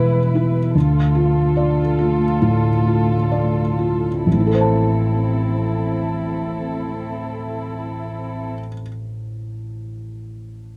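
A dry, close recording with a 1970s studio character and a light touch of reverb frames this fragile, reflective neoclassical excerpt, which moves with a rubato feel and slows over its first 4.3 seconds. A felt-muted upright piano sits up front with a thick-felt, mellow, vintage tone, playing accompaniment across its full length, while a muted chamber string section holds veiled, con sordino chords with soft-attack bowing and vibrato until 8.5 seconds. The harmony passes from E to Dm and settles on Am at 4.3 seconds as a second section begins, and once the strings fall away at 8.5 seconds the piano finishes alone.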